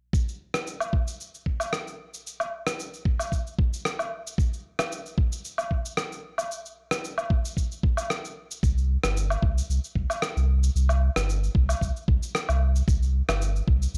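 A dry, gritty cassette-tape recording with a faint mains hum frames this short cut from a longer organic downtempo piece, its warm, mystical mood set at 113 BPM in a straight 4/4. Up front, a compressed, sampler-style electronic kick with a thumpy punch plays alongside a percussion kit of cabasa, rim click and woodblock, both re-recorded in a large room. At 8.6 seconds a deep, round sine sub bass arrives with a fast attack and mellow sustain, moving between G1 and C2 and pumping under sidechain until the end at 14.0 seconds.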